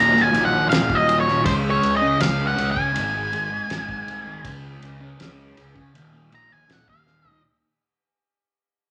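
A straight 4/4 pulse from a damped 70s drum kit, with a fat snare, tight kick, ride cymbal, toms and a rolled-off top, carries this dark, trippy psychedelic rock passage, which is cut from a longer piece and fades out throughout. Up front, an octave-fuzz lead guitar plays a picked, distorted solo across the whole stretch, while a double-tracked, compressed fuzz guitar grinds out a riff through a phaser. Underneath, a fingered electric bass adds overdriven fuzz, and an overdriven tonewheel organ holds gritty, thick chords through chorus vibrato and a fast rotary speaker in the background until 1.4 seconds. A grainy egg shaker sits very quietly in the room early on, and the drums close with a fill from 7.1 seconds. The harmony moves from Ebmadd9 through Db5, Ab and Db5 before landing on Eb5, and the mix sits in a moderate, large studio reverb.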